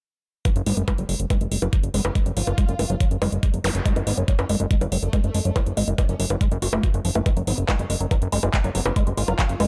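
A squelchy, resonant liquid acid bass carries the riff in this hypnotic psychedelic trance excerpt, its square-wave tone run through a filter sweep, phaser, tape echo and sidechain pumping. Underneath sits a fat analog bass, up front, thick and nasal, its detuned sawtooth and square waves saturated and evolving over a low sustained line. An up-front electronic kick knocks steadily in 4/4, joined by a tape-toned drum kit with bongos, handclaps and metallic hats, both re-recorded in a small room. In the background, a formant-sweep wobble bass adds a detuned, compressed second line, thickened by lush chorus and delay and thinned by a high-pass filter. A brief electronic zap flashes at 3.6 seconds, and light reverb holds the mix together.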